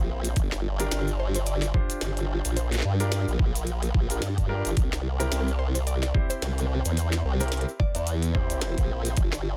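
A swung 16th-note groove at 109 BPM in 4/4 drives this playful, swaggering glitch hop fragment, cut from a longer piece. The gritty, thumpy electronic kick sits up front with overdrive, while a glitchy kit adds clicky hi-hats and a tiny, softly clipped snare, and a grainy, bright cabasa ticks away in the background. Underneath, a formant-sweep wobble bass in a low register, detuned and chorused with a fast attack, carries the harmony from Gm7 to C7 at 4.8 seconds. A warm concert grand piano with deep bass punches out stabs treated with sidechain pumping and dub echo. From 1.2 to 8.0 seconds, a woody, wave-folded pluck plays a mellow, chorused melody with a short decay, set back in the mix with its own dub echo. The sound is dry and dense, with a heavily limited modern master.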